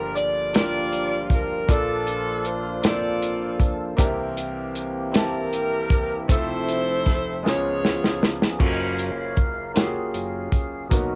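A saxophone section sings the melody with jazz-style vibrato over a clear, deep-bassed concert grand piano and a fat, lightly overdriven tonewheel organ with key click and fast rotary speaker, joined at once by a muffled, dry soul drum kit with dark cymbals, in this reverent, hopeful slow gospel fragment in 6/8, a home cassette recording with light reverb that brings a drum fill at 7.4 seconds and then an organ solo from 8.6 seconds, when the saxophones stop.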